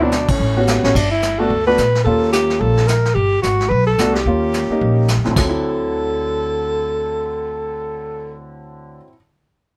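Small-group swing and bop jazz at a brisk 218 BPM in 4/4, with a relaxed, sophisticated mood and a swung eighth-note feel in D mixolydian, cut from a longer piece. A breathy, whispered alto saxophone carries the melody up front, close-miked with vibrato, subtone and a soft attack, bathed in plate reverb until it stops at 8.3 seconds. A mellow tenor saxophone adds a low second line with scooped notes only in the opening moment, sitting in the background before dropping out at 0.7 seconds. Beneath them, a woody upright piano with long sustain comps through the chords while a pizzicato upright bass with steel strings anchors the low end, and a vintage kit played with brushes, with dark cymbals and a punchy kick, drives the swing in a small-room sound. A band accent lands at 0.3 seconds, followed by a drum fill that leads into passages moving between Gmaj7 and Eb9, before a shift to D9 at 5.4 seconds, shortly before the drums fall away at 5.6 seconds.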